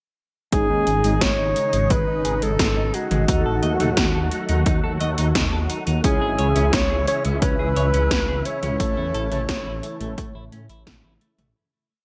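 A dark, scooped alto saxophone with tape echo carries a jazz-style motif melody through this cinematic, nocturnal synthwave piece at 87 BPM, over a silky analog string pad with ensemble chorus and sidechain pumping, a twangy clean electric guitar repeating an eight-step riff through a filter sweep, mellow synth brass stabs set in the background, a rumbling detuned saw bass in sequenced sixteenths, 80s pad drums with gated reverb on snare and toms and metallic hats, and an overdriven, punchy electronic kick, moving through G#sus4, D#dim, C#m and A before fading out from 7.9 s.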